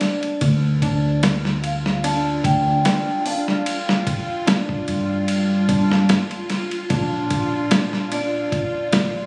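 Brooding and cinematic, this trip hop excerpt moves at 74 BPM in D minor with a light swing, as a slightly broken-up electric guitar picks arpeggios through 12-bit sampler grit and digital delay while a gritty, compressed sampler-style drum kit with a thumpy kick and medium-tuned snare sits up front. A woody pizzicato upright bass with tube saturation enters at 0.4 seconds, followed by a tense, detuned string-like drone with phaser and its own reverb at 1.4 seconds and a ringing vibraphone melody with slow motor vibrato and tape echo at 1.6 seconds. The harmony rests on D minor before shifting to Bb at 6.9 seconds, and the whole is coloured by a phone-in-the-room recording with club reverb, vinyl crackle and compression.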